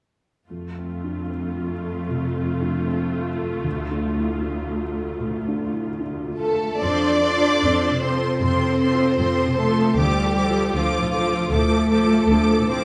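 Bittersweet and moving, this rubato cinematic film-score excerpt at 76 BPM opens with a dark, worn baby grand piano, with audible action noise, over lush bowed violas with portamento and expressive cellos, before at 6.4 seconds a violin section adds a soft-attack second line and mellow French horns hold sustained chords in the background, joined at 6.8 seconds by a focused, up-front high violin melody and woody double basses, all set in a moderate recital-hall reverb with lossy compression artefacts as the harmony moves between F and Dm.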